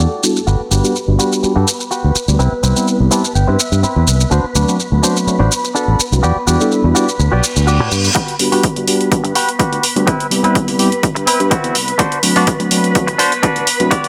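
A sunny, feel-good filtered disco house groove at 125 BPM in G major opens with lush, chorused string-machine chords, a twangy, compressed clean electric guitar riff with gritty sampler texture, a bright, punchy fingered bass and overdriven electronic shaker and hi-hat, joined by a mellow, phased tine electric piano over Gmaj7, Cmaj7, D7 and Em9 changes, with filter sweeps and sidechain pumping throughout, a guitar fill at 2.9 seconds, a reverse cymbal at 7.4 seconds, and a punchy overdriven electronic kick arriving at 8.2 seconds to drive the build-up in light digital ambience.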